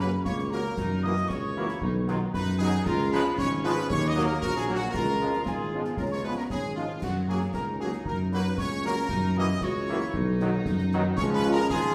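Set in the reverberant glow of a recital hall, this proud, spirited military-style march for wind band moves in a brisk two-beat stride, with a clear trumpet section carrying the melody over an up-front, smooth-topped tuba bass. A hollow, airy piccolo and a soft-edged woodwind section add second lines, while a dark, distant French horn section supplies accompaniment and a tight trombone section holds sustained chords in the background. Snare drum, bass drum and dark clash cymbals join at 0.3 seconds, and a mellow euphonium briefly adds its own line between 5.5 and 6.9 seconds in this cut from a longer piece.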